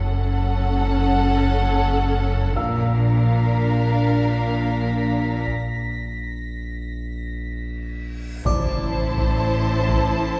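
Cinematic suspense film score at 79-86 BPM, mysterious and ominous, where lush bowed string sections (a light-vibrato violin melody, a distant second violin line, warm violas, a focused cello and rich double basses over a thick, saturated sub bass drone) move from F#m to Bb beneath a soft felt-muted upright piano and an intense high violin texture from 2.6 s. A huge reverse cymbal rises at 8.3 s into an impact, and heavy taiko drums and a dry triangle land with it on Am at 8.5 s, all heard from further back in a scoring stage reverb.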